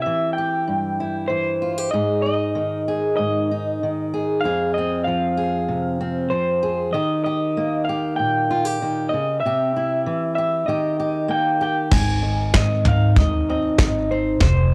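A slightly broken-up electric guitar through a small old amp carries the melody up front, its compressed, lo-fi tone shimmering with harmonic tremolo and the grain of cassette tape. This is a wistful, bittersweet indie folk passage, cut from a longer piece, in a straight 4/4 at 96 BPM. Beneath it, a warm, fingerpicked steel-string acoustic guitar sits close and clear, supporting a progression that moves through C, Fm, Eb and back toward Ab. At 11.9 seconds the arrangement builds as a woody, thumpy upright bass enters, plucked on gut strings, alongside a soft brush drum kit with a tight kick, medium-tuned snare, toms and crash cymbal, the kit also carrying a cassette-tape character. Light studio reverb frames this homespun recording, which was made on cassette and runs to 14.7 seconds.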